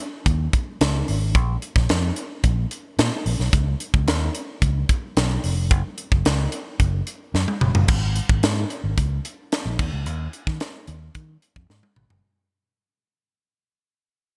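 A straight 4/4 groove at 110 BPM drives this nocturnal, urban slice of polished 1980s jazz-funk pop, cut from a longer piece, with an amped fingered electric bass ranging from F1 to Eb3 and a crisp, airy fusion drum kit up front together from 0.3 seconds. The drums feature a high-tuned snare, punchy kick, hi-hat, crash cymbal and toms, all bathed in gated reverb. A fill at 7.3 seconds marks the turn into a new section that gradually fades out, and another fill at 11.7 seconds rounds off the close. The bright digital-style production sits in a light room reverb.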